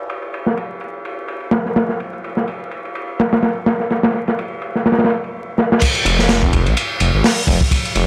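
This breakbeat excerpt struts along at 126 BPM in 4/4 with a swung sixteenth-note feel, carrying a swaggering, funky mood in F minor pentatonic. A crunchy acoustic breakbeat kit drives it from 0.1 seconds, its kick, snare, hi-hat, ride and crash all filtered for a dark, rolled-off top, with a tight kick, medium-tuned snare and gritty saturation sitting up front. A drum fill at 5.6 seconds leads into the drop, where a phased, detuned saw bass arrives at 6.1 seconds, thick and swirling with tube saturation, holding low between F1 and Bb1. The sound is dry and close, with a layer of vinyl crackle adding a dusty texture.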